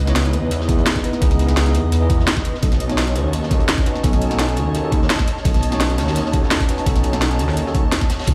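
Soulful, rolling liquid drum and bass opens on a glassy, ethereal FM pad holding sustained chords, its chorus and built-in reverb lending a soft sheen while sidechain pumping makes it breathe, set against a menacing, detuned sawtooth bass that sits up front with a saturated, evolving edge. A bell-like tine electric piano arrives almost at once with bright, clean accompaniment trailed by delay, moving from C#m9 to B7. Two drum kits fill out the groove: an overdriven electronic kit up front with a cracking snare, bright hats and cabasa, and beneath it a crunchy acoustic breakbeat kit, dark and gritty with a high-tuned snare and a rolled-off top, tucked into the background. A knocking, overdriven electronic kick joins at 0.7 seconds. A large studio reverb and the sense of a big sound system in a bare room give the whole cut from a longer piece a spacious, roomy finish.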